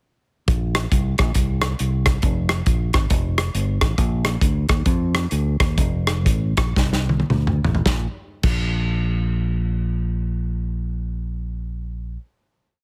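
Fingered electric bass and a natural country drum kit enter together at 0.5 s in this short, soulful and uplifting uptempo gospel piece, with the swung drums driving a two-beat praise groove from a small room while the dark, round, punchy bass walks and runs with chromatic approach notes. The pace slows from 4.0 s, and a drum fill leads into the final note at 7.9 s; the drums stop at 8.6 s while the bass rings on. Both parts sit up front in a dry, heavily compressed radio sound, with the tight kick and medium-tuned snare standing out.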